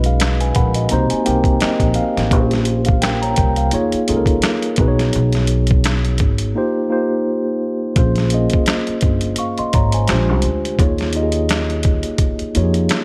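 Late-night and soulful, this swung neo-soul R&B excerpt sets a mellow, clean tine electric piano up front, opening with a fill from 0.2 to 2.3 seconds over chords such as Cm7, Bbm69 and Eb9sus4, above a woody, dark pizzicato upright bass and a gritty, compressed, pitched-down boom bap sampler-style kit of thumpy kick, medium-tuned snare, hi-hat and finger snaps, all in light digital ambience, with a break from 6.6 to 8.0 seconds before a second section moving through Bbm9 and Bb13.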